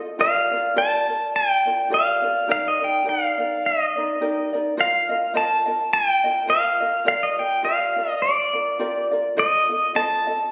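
Hawaiian music in Bb major at 105 BPM with a light swing, languid and dreamy, cut from a longer piece. A bright, twangy electric pedal steel guitar carries the melody up front, played clean with fingerpicks, slide and volume swells, over a quiet, thumb-plucked acoustic ukulele that moves through Gm7, Ebmaj7, F7sus4, Bb6 and F7. The sound sits in a wet recital hall reverb, captured on a phone in the room with added studio reverb and compression.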